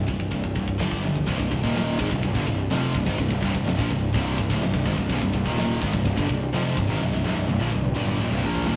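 Heavy and dark, this heavy metal excerpt in C minor drives at 126 BPM with two high-gain distorted guitars riffing over a growly, overdriven fuzz bass and a tight metal drum kit with bright cymbals, before a double-tracked fuzz guitar and a barely audible, lush bowed string section enter at 1.3 seconds, and a drum fill runs from 7.0 seconds to the end in a rough, tube-saturated rehearsal-room sound.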